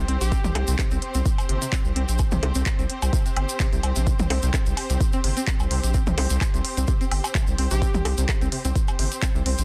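A 128 BPM pulse with a light 16th-note swing drives this clinical, cool minimal techno fragment, anchored by a deep, tape-warm electronic kick and a round, dark analog bass, both up front, the bass pumping against the sidechain, while a clicky minimal kit adds handclaps, hi-hats and a softly clipped snare. A grainy tube shaker and a layered set of electronic toms, cowbell, bongos and woodblock, the latter carrying delay, fill out the percussion, as a twangy, string-like resonator pluck riffs in the background with chorus and delay over a lush, bowed studio string section that also pumps. A punchy, bright unison lead with vibrato and delay flashes a catchy phrase at 0.2 and 7.7 seconds over the opening C5 chord, all set in digital ambience within a dense, heavily limited modern master.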